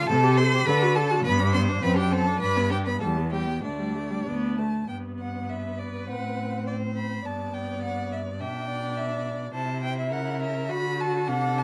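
Lightly reverberant and darkly warm, this graceful, spirited excerpt from a quick classical-period string quartet movement in G major moves at 103 BPM in 2/4 with a rubato feel, tuned to A4 = 436 Hz. A close, clear first violin carries the vibrato-rich bowed melody up front, joined by a focused second violin on an inner line and a more distant viola supplying accompaniment, while a rich cello with a smooth top enters at 0.1 s to anchor the bass prominently. The opening phrase settles on a D chord before a new section begins at 4.9 s, running through to a close on D at 11.6 s.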